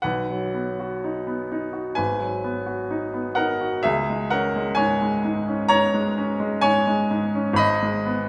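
A wet recital hall reverb, with a decay of about 1.7 seconds, surrounds a clear, polished baby grand piano that sits up front in the sound. This is a short fragment of a romantic classical nocturne for solo piano, melancholic and wistful, moving at a slow 64 BPM in 4/4 with a flexible rubato feel. The piano plays alone throughout the 8.3 seconds, its range reaching from a deep G#1 up to B5, tuned slightly high to A4 = 444 Hz. The harmony moves from B to G#m7 at 2.0 seconds, then to an open C#5, before settling on G#m near the close. The piano's present tone and the hall's lingering ambience give this brief, searching passage an intimate, late-evening character.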